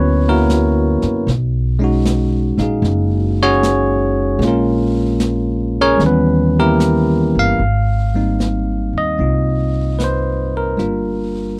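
Late-night and intimate, this swung jazz ballad fragment opens with a bell-like, clean tine electric piano comping rich chords up front beside a woody, pizzicato upright bass. Brushed drums on snare and hi-hat slip in at 0.5 s, sitting softly behind them with a natural small-room tone. The dry, close 1970s-style studio sound moves from a first passage into a new section at 7.6 s, where the harmony settles onto an Abmaj9 chord.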